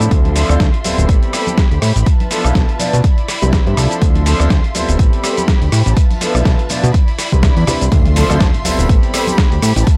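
A funky, nostalgic filtered disco house excerpt at 123 BPM in D dorian opens with a clear concert grand piano, phased and low-pass filtered, comping over Dm9, Am9, Dm69 and Cmaj9 beside a rich, bowed string section with smooth vibrato, both pumping against the beat. A fat, saturated analog bass sits up front with a punchy, overdriven electronic kick entering at 0.1 seconds, while a dusty, gritty sampler-style kit of cabasa, hi-hat, rim click and snare shuffles with swing, joined by very quiet, bright tambourine and soft-handed congas. At 7.9 seconds the drop arrives with a very quiet electronic impact, all within a dry, gritty hardware sound.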